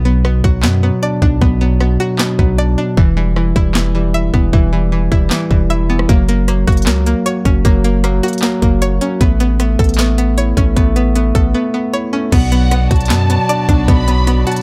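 Dark, warm production frames this menacing, brooding half-time trap excerpt at 154 BPM in B minor, where a worn, slightly out-of-tune tine electric piano and a deep, sine-toned 808-style bass sit up front beside a hard-clipped, crisp trap kit with handclaps and rim clicks, while a bright, twangy resonator pluck spins chorused, delayed arpeggios over a Bm, Em, F# and Aadd9 progression until, at 12.3 seconds, a lush, distant violin section and an earthy chamber string section in the background join with bowed vibrato lines and sustained chords.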